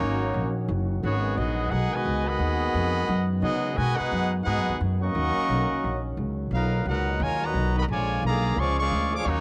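This short cut from a longer big band swing piece opens with the full ensemble at once: a bright trumpet section carrying the melody up front over a woody, pizzicato upright bass with steel strings that sits equally close. The tempo is a brisk 175 BPM in 4/4 with a swing feel on the eighth notes, and the mood is swinging yet sultry. Behind them, a dark, distant trombone section plays a second line with a roomy quality, while a second trombone section holds very quiet sustained chords, tight and punchy, with warm vibrato. The harmony moves from Ebm7 to Abm7, returns to Ebm7, then passes through Bmaj7 before landing on a tense Bb7#9 near the close. Light reverb and a small room ambience frame the 9.4 seconds of playing.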